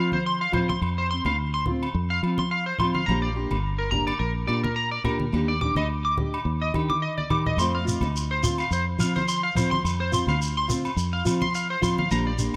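Lightly reverberant and carefree, this joyful highlife guitar band fragment moves at 106 BPM with a gentle sixteenth-note swing, as a twangy, slightly broken-up electric guitar up front plays arpeggios through analog chorus and tape echo over a full-bodied fingerpicked dreadnought acoustic guitar. A round, foam-muted fingered electric bass sits up front with a dark tone, while close, low-tuned congas with a bright thin-skin snap play alongside ringing agogo bells, which sound from a distant large room in the background. The chords move from F5 to Bb6 and Ebmaj7 before returning to F5, and after a short fill at 7.2 seconds a grainy, mellow shekere joins at 7.6 seconds.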